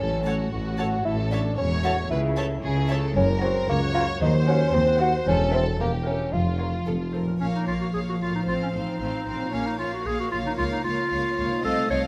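A straight 2/4 pulse at 114 BPM drives this playful, whimsical cinematic cue, cut from a longer piece, whose magical, mischievous mood settles into Bb minor from 3.2 s. A focused chamber violin section carries the melody with vibrato, while a second, sul tasto violin section and a lush, expressive viola section using portamento sit softly in the background. A ringing, thumb-plucked concert harp spins arpeggios alongside them, and the low end gathers a smooth cello section, a distant symphonic double bass section and a mellow tuba with a smooth top. A roomy, distant bassoon adds classical-style accompaniment until 6.9 s, and the tuba drops out at 7.3 s. At 7.4 s the music moves into a new section where a clear, up-front solo clarinet takes a second line over the strings and harp, all set in a moderate scoring-stage reverb.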